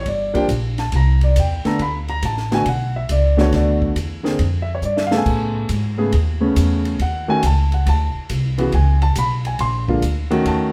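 An intimate, natural-sounding grand piano with audible action noise sits up front beside a woody, thumpy pizzicato upright bass on gut strings, while a compact cocktail drum kit with dark cymbals, a high-tuned snare and a punchy kick plays quieter and dry, adding a fill at 4.8 seconds, in this swinging, late-night small-group jazz passage cut from a longer piece and heard from further back in a room with moderate reverb.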